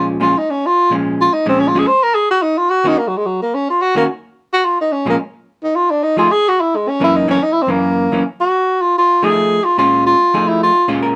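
A breathy tenor saxophone carries the melody and solos across the whole passage, from 0.0 to 11.0 seconds, with a mellow tone, soft attack, light vibrato and scooped notes that give the line a jazz-style phrasing. This is a cool, smoky jazz cut in Bb minor, moving at a brisk 217 BPM in 4/4 with a swung eighth-note feel. Beneath it, a vintage hollow-body electric guitar supplies clean, picked accompaniment with a dark color, sitting up front in the mix. The saxophone also sits forward while keeping a distant, roomy quality. The harmony moves from Bbm7 to Ebm7 and back to Bbm7, then through F7#9 and Gb7 before settling back on Bbm7. Light reverb and close, detailed microphones give the short fragment of a longer piece an intimate, clear presence.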